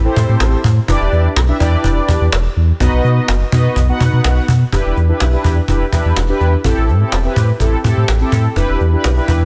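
A deep, full sub bass with an added octave sits up front in this driving, bittersweet dance-pop cut in E minor at 125 BPM, its sine-and-triangle tone sustained under chords moving through Am7, Em7 and B. A mellow synth brass carries the accompaniment, round and dark with detuned sawtooth character, a filter sweep, vibrato and chorus, while a snappy, saturated cajon with snares enters at 0.2 seconds. Light reverb and small-room ambience surround a dense, heavily limited modern master in this short section taken from a longer piece.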